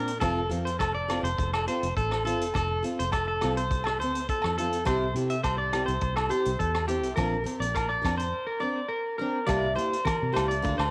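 A straight 4/4 groove at 104 BPM rides on a vintage drum kit of hi-hat, punchy kick and rim click, its sound mid-forward with a rolled-off top, while ringing agogo bells sit in the background from 0.2 seconds. This carefree highlife guitar band piece in F major, tuned to A4 = 435 Hz, is cut from a longer piece. An up-front, twangy electric guitar at the edge of break-up plays picked arpeggios, colored by cassette tape and tape echo. Beneath it, a bright, full-bodied jumbo steel-string acoustic guitar picks the accompaniment, also with a cassette tape tint, and a dark, round, foam-muted fingered electric bass adds tube saturation. The chords move from F to C and Bbadd9, and at 9.5 seconds a short new section turns to C7 as warm, low-tuned, damped congas join in the background. Light reverb and small room ambience frame a homely cassette recording.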